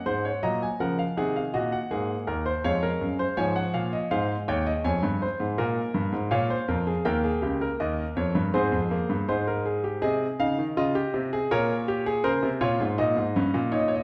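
A straight 4/4 pulse at 81 BPM carries this stately, elegant classical passage, a baroque-style four-part fugue cut from a longer piece, played by a solo concert grand piano whose warm, smooth, vintage tone with deep bass sits up front across a range from Db2 to Bb5, opening on an Eb minor chord before settling into Ab major from 10.0 s, all bathed in a wet recital hall reverb lasting 1.6 seconds.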